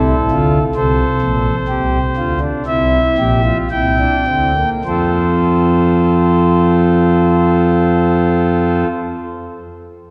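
This classical, baroque-style three-part fugue for pipe organ carries a joyful, elegant mood in F major, tuned to A4 = 436 Hz. A lone pipe organ on a principal stop plays from 0.0 to 8.9 seconds, its smooth, warm baroque voicing sitting up front and spanning Bb1 to G5. The pulse moves in a straight 4/4 between 50 and 69 BPM, slowing over the opening phrase as the harmony moves from F through a rootless F to C7. At 4.9 seconds a new section begins, settling back on F. A long, wet church reverb surrounds the organ, giving this fragment of a longer piece a spacious, resonant sound.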